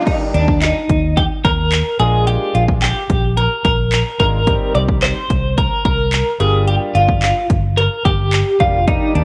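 Upbeat and summery, this dance-pop fragment from a longer piece puts a bright, twangy twelve-string electric guitar up front on the melody with a tremolo effect, over a punchy, overdriven house drum kit of kick, handclaps, metallic hi-hat and crash. A round, foam-muted bass enters at 0.3 seconds with a sidechain-pumping effect, while a polished concert grand piano with a cassette-tape tint supplies the chords, moving from Ebmaj7 through Bb7 and Cm7 to Gm7. A very quiet, lush supersaw pad appears at the start and returns at 8.9 seconds, and the whole track carries the character of a home cassette recording with light reverb.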